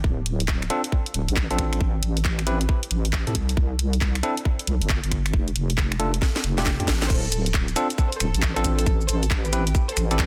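A deep, wobbling bass with a dark chorus-thickened tone sits up front in this skippy, bouncy two-step UK garage excerpt at 136 BPM in D dorian, driven by a tight electronic kick and a layered garage kit of cracking snare, handclaps, finger snaps, hi-hat, shaker and crash, all swung on the 16ths. Bell-like electric piano stabs with delay ride over a Dm7, Am, C5, F6 progression, and after a drum fill at 6.2 seconds the drop at 7.1 seconds brings in a rich chamber violin section playing a smooth, vibrato-laden melody over Dm7 and Am7. The mix is dry, dense and heavily limited, and the piece is cut from a longer track.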